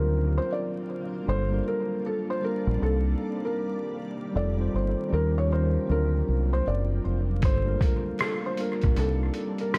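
Lo-fi hip hop in C dorian at 78 BPM with a swung, hazy and melancholic feel, this excerpt sets a soft, muted felt piano melody with analog delay over a mellow tine electric piano carrying cassette-tape coloring, a blurred, detuned granular pad, and a round, punchy dub bass, before a gritty, pitched-down sampler drum kit with a thumpy kick, hi-hat and rim click enters at 7.4 s, all in an echo-heavy mix dusted with vinyl crackle.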